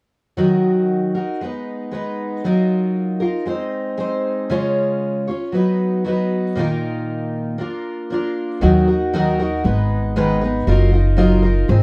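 A small, moderately reverberant room frames this haunting, intimate acoustic folk excerpt in Eb minor at 116 BPM, where an up-front picked twelve-string guitar rings dark, full-bodied and shimmering, its octave-doubled strings carrying audible finger squeak as it moves through chords like Ebm, Abm, Db and Bbsus4 from 0.4 seconds. At 8.6 seconds a woody pizzicato upright bass joins, adding a low foundation as the opening progression returns and the pair play together until 11.8 seconds.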